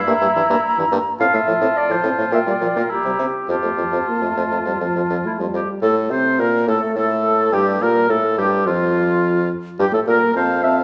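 A quick, cheerful and graceful classical-period movement for wind quintet, cut from a longer piece. A mellow, airy silver flute carries the melody with expressive vibrato and a soft attack, the oboe adds a second line, and a warm clarinet and a distant, roomy French horn fill in the accompaniment, while a clear bassoon sits up front on the bass. The quintet rings in a wet recital hall and moves into a new section at 5.8 seconds.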